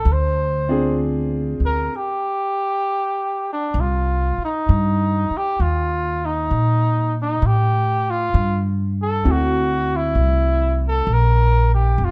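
Dark, softly reverberant production frames this brief, wistful jazz ballad fragment, cut from a longer piece and carried by a gentle swung eighth-note feel. A trumpet with a bucket mute sings the melody, its veiled, distant tone colored by vibrato yet still punchy and forceful. Beneath it, a woody pizzicato upright bass on steel strings sits up front and holds the low end from 0.1 seconds onward. A clear, vintage-sounding upright piano adds smooth chords only briefly, at the opening and again from 9.2 seconds, while the band stops from 1.9 seconds before the phrase resumes. The melancholic harmony drifts through half-diminished, minor seventh and dominant colors, settling on a minor seventh chord at the close.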